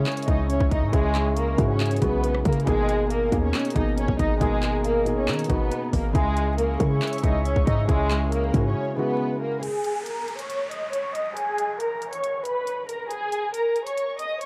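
Dry, gritty and dusted with vinyl crackle, this eerie, melancholic trap excerpt in G# minor moves at 138 BPM in a half-time feel: a dark, lush bowed violin section carries the melody up front through a low-pass filter and tape echo, backed by a soft felt-muted upright piano with audible action noise, a moody analog pad with chorus and phaser in the background, a deep, boomy 808-style bass, and an overdriven trap kit with hard-clipped kick and bright hats, until a break at 8.8 s gives way at 9.6 s to a filter sweep on the violins and an electronic downlifter as the piano and pad fall away, so the strings, drums and downlifter carry on.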